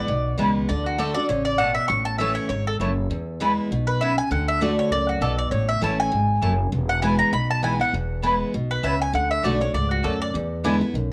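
A rustic, joyful bluegrass excerpt opens with a mandolin carrying the melody over a picked dreadnought acoustic guitar and a pizzicato upright bass, all sounding together from the first moment. The lead mandolin sits up front with a warm, woody, double-strung tone and a touch of plate reverb, while a second, brighter mandolin joins at 0.4 seconds with short stabs. The guitar is full-bodied and also up front, its picked accompaniment marked by audible finger squeaks, and the bass underneath is growly and warm. The quick swung groove moves through E, D and A chords, shifting into a new section at 3.1 seconds and landing on an E7 near the close. The whole recording has the worn, warbling character of an old cassette tape with a warbly pitch drift, set in a small room, and it is cut from a longer piece.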